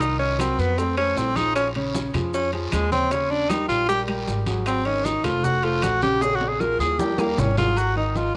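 A straight 4/4 pulse at 155 BPM drives this danceable, sophisticated stretch of Afro-Cuban jazz, cut from a longer piece. A dense bed of percussion sits behind the band: ringing congas played with soft hands, raspy guiro, grainy maracas, metal-shelled timbales and agogo bells, very quiet low-tuned bongos and cowbell struck with hard hands, and close claves that join at 0.4 seconds. Up front, a clear, forceful tenor saxophone solos throughout in jazz style, with vibrato, scooped notes, a punchy attack and a smooth top, carrying a cassette-tape colour. A warm, natural grand piano accompanies the horn, while a pizzicato upright bass with gut strings gives a woody, thumpy low end. The harmony moves from Cm7b5 and F through Bbm7, Eb7 and Ab7, and a drum fill from 6.2 to 7.8 seconds leads back toward Ab7. The home cassette recording has light reverb and a small-room ambience.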